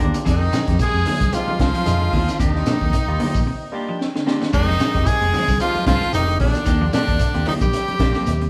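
This intense, defiant afrobeat passage opens on a barky electric piano, two clean picked electric guitars (one playing low arpeggios, the other stabs), a round fingered bass and a grainy shekere, with a gritty breakbeat kit and very quiet, ringing congas joining moments later. At 112 BPM in 4/4 with a light sixteenth-note swing, the groove sits in F dorian and moves between Fm7 and Ebmaj7 over two matching passes. From 0.3 seconds an edgy tenor saxophone carries the melody up front, while a raspy baritone saxophone and a trumpet with vibrato and scooped notes add second lines further back. The saturated drums have a punchy kick, a high-tuned snare and dark cymbals, and they sit as loud in the mix as the bass. A break from 3.5 to 4.5 seconds brings an electric piano fill, capped by a drum fill just before the second pass. The band plays live together in a stone room with moderate reverb, and the recording is cut from a longer piece.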